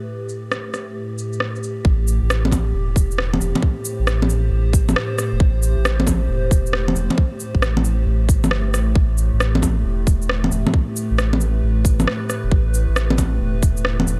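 Wistful and melancholic, this future garage excerpt opens on a warbling, lo-fi pad of sustained chords with chorus, phaser, vintage sampler grit and sidechain pumping, and a filter sweep runs across its first 1.8 seconds. Low-pass filtered electronic shaker, rim click and bongos arrive at 0.3 seconds. From 1.8 seconds a tight electronic kick and a deep, round sine sub bass with its own sidechain pumping sit up front in a swung groove, with the percussion and kick re-recorded in a large room and the harmony moving from Am7 to G.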